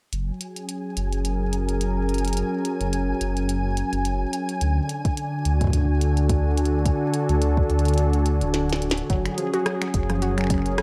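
A smooth, warbling analog pad and a deep, rumbling detuned saw bass open this playful, wistful IDM excerpt at 107 BPM, both under filter sweeps, the pad carrying chorus and a vintage 12-bit sampler grit. A glitchy kit of finger snaps, clicky hats, rim clicks and a tiny snare sits low and tape-toned beneath them with a gentle 16th-note swing, while a flickering, grainy texture with its own reverb hovers high above from 0.5 seconds. The harmony moves from Gbadd9 to D and back, and a soft electronic kick joins at 5.0 seconds, dropping away briefly near the end of the first section as a drum fill leads into the next. At 9.1 seconds a lo-fi, dusty pluck enters with arpeggios, colored by chorus, phaser and delay. The whole sits in a light reverb.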